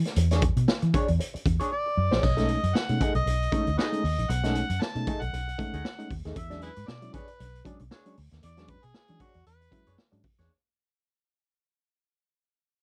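Dry, close and in a 1970s studio style, this playful funk clip fades out across its whole length. It is built on a dark, round, foam-muted fingered electric bass, a gritty, saturated garage drum kit with a boomy kick, hi-hat, snare and splash cymbal, and a clean hollow-body jazz guitar through wah. Alongside a short drum fill, an overdriven harmonica with light vibrato and tongue slaps takes the melody from 1.7 seconds, while a reedy, worn, slightly out-of-tune electric piano adds stabs with fast tremolo from 2.4 seconds over chords that move between E13 and B13 with a loose sixteenth-note swing.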